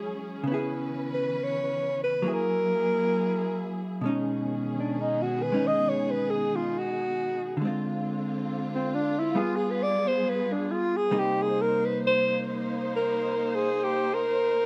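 A mellow alto saxophone sings a smooth, vibrato-laden solo up front from the opening moment of this romantic, late-night jazz ballad, carried over a dark, clean, picked hollow-body electric guitar and a lush bowed string section holding sustained chords, with light reverb and a warm production as harmonies such as Dbm7, Gb9 and G7b9 pass by in a gently swung 4/4.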